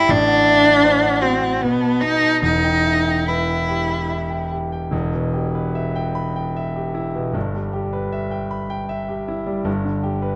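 Warm and lyrical, this romantic classical duo in E minor moves in a flexible, rubato 3/4 at around 70-84 BPM, moving through chords such as B7 and Em. A single up-front bowed cello sings the rich, focused melody with vibrato until 4.5 seconds, while a clear concert grand piano with a deep bass and vintage character accompanies and then carries on alone until 10.4 seconds. Close, detailed microphones capture both players in a moderate concert hall reverb, and the passage is cut from a longer piece.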